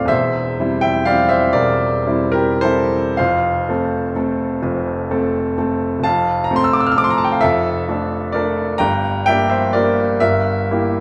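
A clear, intimate baby grand piano sits up front in a moderate recital hall reverb, its natural tone carrying long sustain and an audible action noise that brings the listener close to the instrument. This is a romantic classical nocturne for solo piano in F major, moving in a slow, rubato 12/8 at roughly 34 to 44 dotted-quarter beats per minute. The mood is nostalgic and tender, the piano ranging from D1 in the deep bass up to F6 across this brief cut from a longer piece. The harmony opens on C over E, settles onto F at 3.2 seconds, then passes through D minor over F and G minor before arriving on an E diminished chord over G at 10.2 seconds. The unhurried pacing and lingering resonance let each chord bloom in the hall, giving the passage a reflective intimacy.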